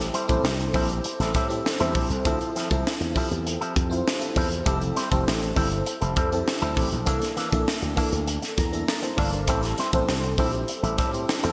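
A straight 4/4 groove drives this upbeat, glossy slice of polished 1980s jazz-funk pop, cut from a longer piece. A crisp fusion drum kit sits up front, with a punchy kick, a high-tuned snare, hi-hat, a pumping small-room sound and gated reverb. A growly slap bass, bright and direct through an envelope filter, anchors the low end, while a dark, clean, compressed electric guitar plays a fingered riff through its own envelope filter and a lush chorus. An FM electric piano adds glassy, bell-like chords with a fast, decaying attack and an ensemble chorus over a progression moving from Am7 through Dm9, Fmaj9 and C13 back to Am7, and it takes a brief fill from 8.3 to 9.5 seconds. A moderate hall reverb and bright digital production give the whole track a sleek, sparkling sheen.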